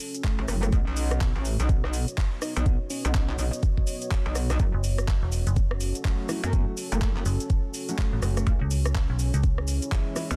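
A swung 124 BPM bass house groove in 4/4 drives this swaggering, gritty excerpt, with a knocking, up-front electronic kick entering at 0.2 s alongside a garage kit of handclaps, rim clicks, shaker and metallic hi-hats, its snare softly clipped. A metallic wobble bass, saturated, compressed and bright, pumps against the kick from 0.4 s, and a mellow, digital FM bass joins it from 4.7 s. Underneath, a deep, moody pad of detuned sawtooth and sine with a sub octave holds sustained chords with chorus, reverb and sidechain pumping. A sparkling, bell-like FM electric piano carries the melody in the background with chorus and tape echo, pausing before returning at 6.3 s, just after a dark, worn grand piano with audible action noise and a boxy, short sustain adds echoed stabs from 6.0 s. In F# dorian, the harmony moves from F#m through Badd9 and back before landing on C#m, all set in digital ambience under a dense, heavily limited modern master.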